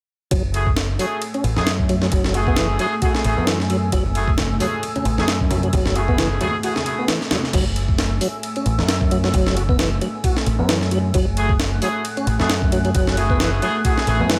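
A swung breakbeat groove drives this energetic, gritty excerpt, with a compressed, pitched-up sampler-style drum kit up front, its thumpy kick, high-tuned snare, hi-hat, ride and crash sounding as if re-recorded in a large room, over a round, punchy dub bass. A lightly overdriven tonewheel organ riff with key click and slow rotary shimmer carries a filter sweep through the first half, while bright, vintage horn stabs cut in from 0.5 to 7.1 seconds and again from 11.4 seconds. Underneath, a moody, detuned analog pad breathes with sidechain pumping, and distant, ringing congas sit in the background from 4.1 to 7.4 seconds.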